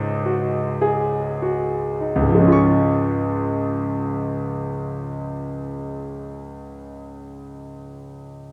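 A warm, natural grand piano sits up front in this short fragment of a serene, dreamy romantic nocturne, played solo in an unhurried 4/4 with free rubato. The opening moments slow down over a dominant-seventh chord before settling onto the home chord at 2.6 seconds, where a second passage carries on until the cut at 8.5 seconds. A wet recital-hall reverb wraps the piano, giving a sense of listening from further back in the room.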